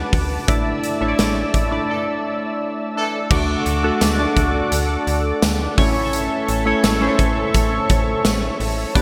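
Bright digital production, set in a lush hall, gives this nostalgic, uplifting 1980s-style pop fragment a spacious sound. A big rock drum kit sits up front with a punchy kick, a medium-tuned snare, bright cymbals, hi-hat and tambourine, and its gated reverb lends it a big-room character. Up-front analog keys carry the accompaniment: round and chorused, with a ring-modulated edge and a filter sweep. Above them, a brassy, detuned analog pad holds sustained chords with warbling vibrato and chorus. A snappy FM bass with a metallic, slap-like attack anchors the low end, and a loose horn section with light vibrato and delay adds stabs in the background from 1.9 s, where a break arrives amid the opening band accents, before the harmony moves from Asus4 to D at 3.3 s and then settles on A.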